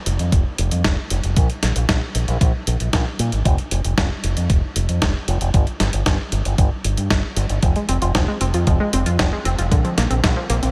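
Danceable and melodramatic, this excerpt of italo disco moves at 115 BPM in a straight 4/4 feel, set in F dorian. A thumpy electronic kick drum, re-recorded in a small room, sits alongside a dusty soul sampler-style kit whose compressed hi-hat and gritty, medium-tuned snare run from 0.1 seconds to the end. Up front, a fingered electric bass pushed through an envelope filter sounds bright, direct and punchy, ranging from F1 to Bb2 while the harmony holds off any chord at first. At 7.6 seconds an analog pluck enters with arpeggios between D3 and F4, its round sawtooth, square and triangle tones shaded by a noise layer, ring modulation, a filter sweep, chorus and analog delay. That entry brings the chords in, moving from Fm to Bbadd9 at 9.7 seconds, all set in a light reverb.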